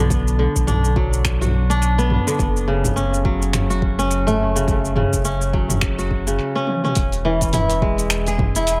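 Crisp, ringing fingerpicked kora arpeggios trailing dub echo open this earthy, peaceful organic downtempo excerpt over a round, mellow sine sub bass that pumps with sidechain, joined at 0.1 seconds by a layered, overdriven deep house kit of finger snaps, hi-hat, shaker and toms with tape echo plus a deep electronic kick, both drum parts re-recorded in a small room, with a drum fill at 6.7 seconds leading into a new section at 7.0 seconds, the swung groove sitting in a lightly reverberant, echo-heavy mix.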